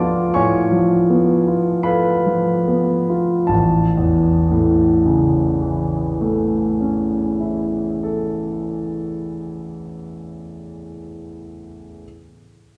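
Impressionist classical solo piano in a hazy, dreamy mood: a warm concert grand with deep bass and an open tone sits up front in a wet hall reverb. It moves in a free, rubato 4/4, slowing over the opening Dm6 before settling onto A at 3.5 seconds in this short fragment of a longer piece.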